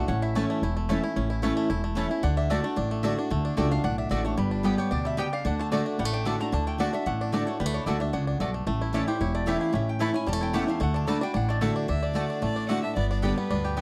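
A metallic, nasal lap resonator guitar played with a steel bar takes a solo over twangy fingerpicked banjo melody, up-front picked steel-string acoustic guitar with finger squeak, thumpy pizzicato upright bass and bright mandolin stabs in this joyful, lively bluegrass excerpt at 224 BPM in D major, before a dark, bowed fiddle with light vibrato takes the melody at 11.9 seconds in a dry, close 1970s-style studio sound with light reverb.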